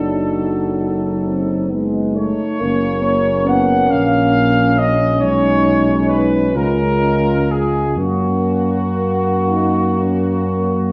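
A full brass band enters together on a diminished chord, with the trumpet section carrying the melody up front in a dark, tight tone and light vibrato, while a smooth-topped tuba anchors the bass just as prominently. Behind them, a punchy French horn section sings a second line in the background, a distant, roomy trombone section and a warm solo euphonium fill out the accompaniment, all bathed in the reverb of a recital hall. In slow, flowing triple-based time with rubato, this serene, hymn-like classical fragment moves through a gentle chain of harmonies before coming to rest on its home chord at 8.0 seconds.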